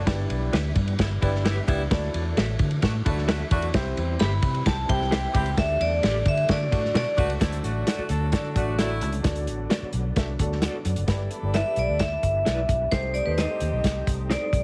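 Warm and uplifting, this uptempo 1960s-style soul excerpt at 131 BPM rides on a dry, muffled drum kit with a tight kick and a round, punchy foam-muted electric bass up front, while a worn baby grand piano comps, a gritty overdriven tonewheel organ holds very quiet sustained chords through a slow rotary speaker, a slightly broken-up electric guitar adds tremolo-tinged stabs in the background, an edgy saxophone section carries a second line, and a metallic, ringing hard-mallet vibraphone takes the melody at 4.2 and 11.5 seconds, all under light reverb and a heavily compressed radio sound.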